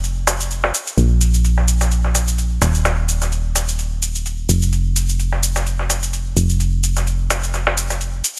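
Joyful and euphoric, this short excerpt of piano house moves at 128 BPM in 4/4 with a light swing on the sixteenths. A punchy, round FM bass with a fast attack and a dark, decaying tone sits up front between Eb1 and Bb1, joined by a gritty, compressed sampler-style kit of hi-hat and a fat, filtered snare, plus a tape-warm electronic shaker re-recorded in a small room. The sound is dry and bright in a 1980s digital style. The kit and shaker run through the full 8.4 seconds, while the bass stops at 8.2 seconds.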